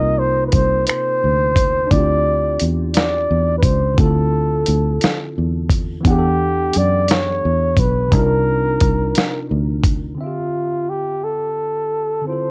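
A hazy home cassette recording with light reverb frames this sultry, yearning slow R&B fragment in 6/8 at 58 BPM, moving through Cm11, Dm11 and Em11 chords. Up front, a breathy, close-miked flugelhorn sings a dark, whispered jazz-style solo with vibrato and scooped notes, while a worn, slightly out-of-tune tine electric piano, colored by cassette tape and plate reverb, accompanies it. A round, foam-muted fingered electric bass and a compressed, gritty sampler-style soul kit with a thumpy kick, medium-tuned snare, hi-hat and finger snaps drop out near 10 seconds, leaving horn and piano to carry on until 12.5 seconds.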